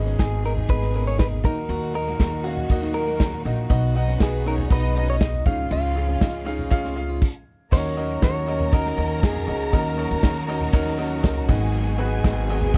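Dramatic and earnest, this piano-driven pop excerpt in Eb minor moves at 119 BPM in a straight 4/4, with a clear, woody upright piano, a pizzicato upright bass with gut strings and a thumpy tone, and an up-front acoustic drum kit played with bundle sticks in a small room, all set in a dry, close 1970s-style studio sound. A bright, compressed clean electric guitar carries the melody while a dark fingerpicked steel-string acoustic guitar plays a riff in the background with audible finger squeak until a stop at 7.2 seconds, and a bright, intense string section holds sustained chords behind them. From 3.9 seconds a distant, expressive violin section adds a lush bowed second line, and the harmony moves from Abm through Ebm, B and Db before settling on Ebm7 and Abm7.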